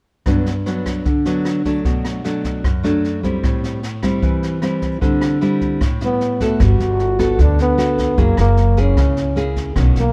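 Lightly reverberant with a dark production, this relaxed, sunny bossa nova in G major moves at 152 BPM. It opens at 0.3 seconds with a classical-style, fingerpicked nylon-string guitar, finger squeaks audible, over a brushed jazz drum kit with a boomy kick, high-tuned snare, rim clicks and a rolled-off top in a small, roomy space. A mellow trombone takes the solo melody at 6.0 seconds with light vibrato, and a woody, growly pizzicato upright bass joins at 6.6 seconds as the chords move from Gmaj7, Bm7, Am7 and D9sus4 to Gmaj9 and F#9 in this section cut from a longer piece.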